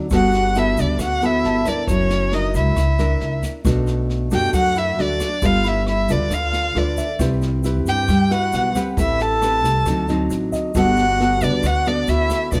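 Romantic and sunny, this bossa nova excerpt in G major moves at 135 BPM, with a dark, bowed violin carrying the melody up front with vibrato and portamento and an airy, reedy alto flute playing a distant second line. Warm, fingerpicked nylon-string guitar and a thumpy, woody pizzicato upright bass on gut strings accompany them, along with an intimate grand piano with audible action noise in the background. Brushed jazz drums with a boomy kick and rim click sound as if in a small room, and a grainy tube shaker sits close and dry at the back. The whole is set in light reverb as the chords move from Gmaj9 through Bm7 and Cmaj7 to a D7b9 turnaround that lands back on Gmaj9 at 10.7 seconds.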